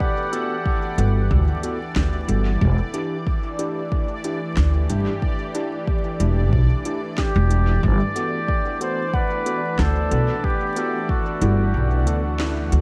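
Hazy and deep, this ambient dub excerpt moves at 92 BPM in 4/4 with a light sixteenth-note swing, drifting from Gmaj9 to Em7 and back to a rootless Gmaj9. An up-front, woody pizzicato upright bass and a deep, tape-warmed electronic kick anchor an organic electronic kit of woody snare and smooth hi-hats, while a detuned, warbling sawtooth pad sustains chords, a soft FM bell arpeggiates, and a bubbling, resonant stepped-filter texture hovers in its own reverb. A lightly overdriven tine electric piano throws out echoing stabs, and a veiled, distant bucket-muted trumpet carries the dub-echoed melody, returning at 7.2 seconds before the kick drops out at 11.7 seconds and the band hits an accent at 12.4 seconds, all over a dry, echo-heavy mix with vinyl crackle.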